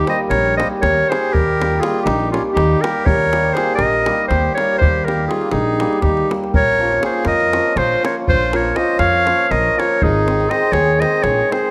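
Wild and festive, this short cut from a longer Balkan wedding-band folk piece races along at 242 BPM counted in eighths, in a straight 7/8 metre centred on Eb mixolydian. A clear, classical-style clarinet sits up front as the solo voice, carrying the melody between F4 and F5 across the full 11.7 seconds. Beneath it, a reedy accordion with dry tuning plays a second line, while a mellow hammered dulcimer supplies shimmering, ringing accompaniment in the lower-middle register. A woody, pizzicato upright bass enters at 0.3 seconds, and a tight, close davul keeps the percussion in the background. The harmony moves from Eb to Bbm at 6.6 seconds and settles on Ab at 10.0 seconds, all set in a moderate recital-hall reverb.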